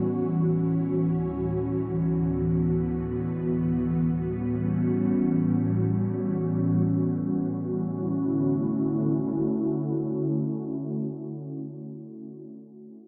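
An ethereal, detuned pad with a slow attack and long release plays alone throughout this dreamy, blissful hip hop excerpt in free time and D major, its dark, chorused sustain moving from Dmaj9 to A13 and back, with a filter sweep over the first 7.6 seconds and a huge ambient reverb around it.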